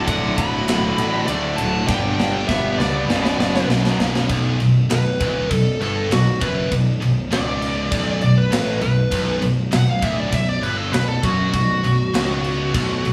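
A straight 4/4 heavy metal groove, opening in half time, drives this aggressive excerpt, where a tight metal drum kit with bright cymbals and a drum fill from 1.9 s supports layered high-gain rhythm guitars, a tight distorted guitar and a growly fuzz bass under an up-front high-gain lead guitar, accompanied in the opening by a smooth overdriven second lead and a very quiet, lush bowed string section over D, G and Bm chords before the lead takes a solo at 4.3 s in a polished, airy room.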